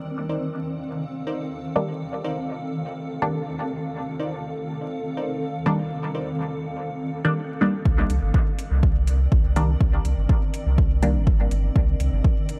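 Nocturnal and meditative, this dub techno piece moves at 123 BPM in C dorian, resting on a Cm9 chord in a dark production dusted with vinyl crackle. A cloudy, evolving granular pad holds sustained chords throughout, its slow attack and built-in reverb giving a blurred, full-bodied haze that breathes with sidechain pumping. A crisp digital wavetable stab plays a riff in the background with dub echo, while a detuned, filter-plucked dub chord stab enters at 1.8 seconds up front, colored by phaser and echo as a filter sweep moves across the synth stab in the opening stretch. At 7.9 seconds the groove arrives: a punchy, overdriven kick and a round sine sub bass sit up front, soon joined by metallic, overdriven hi-hats darkened by a low-pass filter. The result is a short, hypnotic fragment of a longer piece, steady and straight in 4/4.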